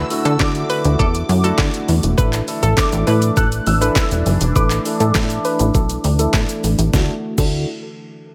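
A straight 4/4 groove at 101 BPM drives this euphoric, upbeat dance-pop excerpt in D major, moving from Dadd9 to Asus4 at 2.2 seconds and back to Dadd9. Up front, an electronic R&B drum kit pairs a knocking kick and deep snare with metallic hats, handclaps, shaker and crash, while a punchy, funky analog bass with a filter-plucked attack, ring modulation and a wave-folded edge carries sidechain pumping. A polished baby grand piano with long sustain plays accompaniment. A detuned sawtooth pad with a slow attack sits in the background, its chords shaped by chorus, sidechain pumping and a low-pass filter. Two melodies ride on top: a hollow, bouncy square-wave pluck with chorus and tape echo, and a dreamy, warbling FM bell sounding high above it with ensemble chorus and tape echo. A barely audible downlifter opens the passage, a grainy acoustic tube shaker enters very quietly at 2.2 seconds, and a filter sweep runs through most of the track within a digital ambience.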